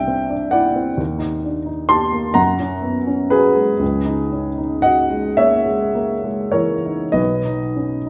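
A wet recital-hall reverb surrounds an intimate, up-front baby grand piano, its natural tone carrying audible action noise in a church or concert-hall space. This serene, hazy fragment of impressionist classical solo piano unfolds in 6/8 with free rubato, the piano playing alone from 0.0 to 8.1 seconds across a span from deep bass to the upper register. Colourful harmonies drift from Cadd9 through D#, F#add9 and a lingering C#m11 before settling on B.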